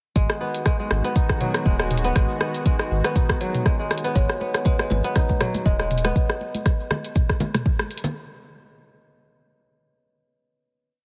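A fingerpicked kora spins a repeating sixteen-step arpeggio through this short afro house piece, its crisp, ringing plucks carried on delay and pumped by sidechain, over a G# minor seventh chord at 120 BPM with a gentle 16th-note swing. Beneath it, an up-front electronic kick holds a deep four-on-the-floor pulse alongside a programmed afro-pop kit of metallic closed hats, rim clicks, shaker and low toms, while a round sine sub bass rolls out a dub-style line. A detuned sawtooth pad sustains soft, smooth chords through chorus and tremolo, breathing with the sidechain until it drops out at 6.1 seconds along with the bass. At 4.2 seconds a woody kalimba enters with thumb-plucked hook phrases echoing through delay, and from 4.4 seconds close, dry congas add hard-handed, interlocking high, low and muted tones. The whole piece sits in a light reverb, carrying its hypnotic, earthy drop groove.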